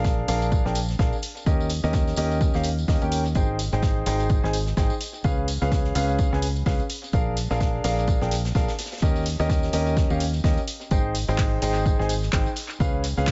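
Piano house at 127 BPM in Ab major, joyful and euphoric, with a swung 16th-note feel. A clear concert grand plays the up-front riff with long sustain, pumping, low-pass filtering and tape echo over a Bb7, Eb7, Abmaj7 and Db7 progression, while a foam-muted fingered electric bass pumps beneath it and an overdriven, dry electronic kick drives the beat. Background hi-hats and snare from an airy studio kit, a close tambourine, and a punchy analog drum machine adding handclaps and hats from 0.3 seconds fill out this echo-heavy mix, whose top end stops at 7.7 kHz.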